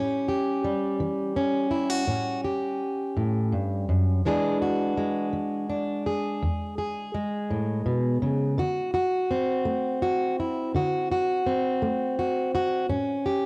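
This blues piece, cut from a longer performance, has a swaggering, soulful mood at a slow 56 BPM in 12/8 with a straight feel, tuned to A4 = 439 Hz. A fingerpicked, plugged-in steel-string jumbo acoustic guitar plays solo throughout, sitting up front with a full-bodied tone that spans from E2 to G#4. The changes move from A7 to E7 at 4.3 seconds, then D7 at 8.6 seconds, before returning to A7 at 12.9 seconds. Light reverb and a small room ambience surround the guitar, and the 13.5 seconds were captured as a home recording on cassette.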